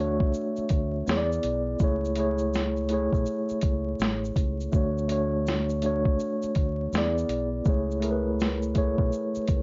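Nostalgic and melancholic, this short lo-fi hip hop excerpt at 82 BPM swings lazily in 4/4 as a mellow tine electric piano, up front and passed through cassette tape and a low-pass filter, moves through Dmaj7, E7 and Amaj7 over a dark, round fingered electric bass, while a gritty, pitched-down boom bap sampler-style kit with a thumpy kick, high-tuned snare, hi-hat and shaker enters at 0.2 s, all wrapped in worn, warbling old tape, vinyl crackle and moderate studio reverb.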